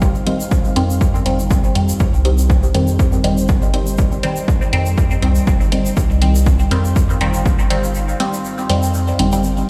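This is a hypnotic, cavernous dub techno excerpt in C minor at 121 BPM, opening on a Cm chord as a dark, detuned sawtooth pad with chorus and slow attack sits in the background, pumping against an up-front, punchy kick drum that is overdriven and re-recorded in a large room. A round, deep analog bass with a sine-like core holds the low end, also pumping, while a grainy, saturated tube shaker runs quietly throughout with a 54% swing on the sixteenths. From 0.3 seconds a muted, filtered dub chord stab arrives up front, its short plucked decay colored by phaser, a moving notch and dub echo, alongside an overdriven hi-hat. The whole mix is heard as if played on a big sound system in a bare stone room, giving it a cavernous reverb. The kick drops out at 7.6 seconds, a break follows at 8.0 seconds, and the pad and shaker carry on to the end.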